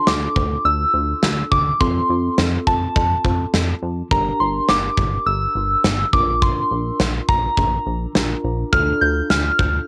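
Synth-pop in D minor at 104 BPM, cool and driving, this short cut from a longer piece sets a soft, pure FM synth bell melody with chorus, cassette tape and analog delay over a worn, slightly out-of-tune tine electric piano through a combo amp, a glossy pulse-width-modulated synth bass with a filter pluck, and an up-front gated 80s kit of tight kick and medium-tuned snare, all moving through Dm, F, Gm and Bb with a light reverb and the feel of a home cassette recording.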